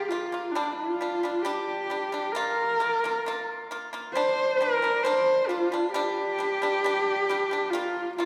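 In a straight four-beat metre, this fragment of a longer Mongolian traditional piece feels vast and galloping, as a clear, husky horsehead fiddle, bowed up front by a single player with vibrato and portamento, carries the melody over dry, percussive pipa arpeggios plucked with fingerpicks, the two sounding together throughout inside the wet reverb of a recital hall.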